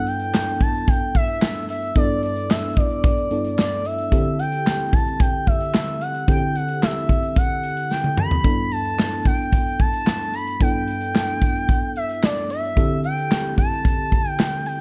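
Dark, lightly reverberant small-room production frames this smooth, danceable early-eighties boogie funk excerpt in G major at 111 BPM, moving between G69 and D9sus4 chords. A mellow, round FM electric piano with chorus and a faint noise layer carries the accompaniment from G2 to A4. An up-front sawtooth portamento lead with vibrato, chorus and slapback echo sings the melody between D5 and B5. Underneath, a polished, punchy studio kit with handclaps, hi-hat, snare and toms plays throughout, breaking into a fill at 7.9 seconds, while a jingly, vintage-toned tambourine sits in the background.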